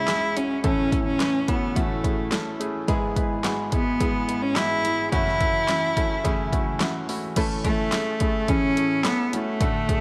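Piano-driven pop in A major at 107 BPM in a straight 4/4, this short excerpt from a longer piece carries a warm, hopeful mood. A rich, smooth cello takes the melody up front, bowed by a single player with light vibrato and an even, close tone. Beneath it, a polished grand piano plays the accompaniment while a picked steel-string acoustic guitar adds a dark, full-bodied jumbo riff. An electronic deep house drum kit enters at 0.1 seconds, its punchy kick, fat snare, handclaps, hi-hat and crash cymbal layered and overdriven near the front of the mix. The harmony moves from C#m through A, E/G# and F#m7 before returning to A as a new section begins at 7.4 seconds, all set in light reverb.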